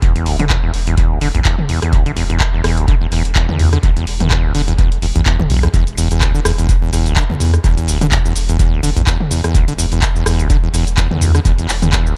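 A raw, driving acid house groove at 126 BPM, with a light 16th-note swing, opens at once on a squelchy, resonant sawtooth acid riff with filter sweeps, tube saturation and dub echo, sitting up front over a warm, round sine sub bass with sidechain pumping and a deep analog kick. A punchy analog drum machine adds cabasa, handclaps, hi-hat, rim click and toms, its hits trailing dub echo. The sound is dry of reverb but echo-heavy, and the excerpt stays on an E5 chord for about 12 seconds, cut from a longer piece.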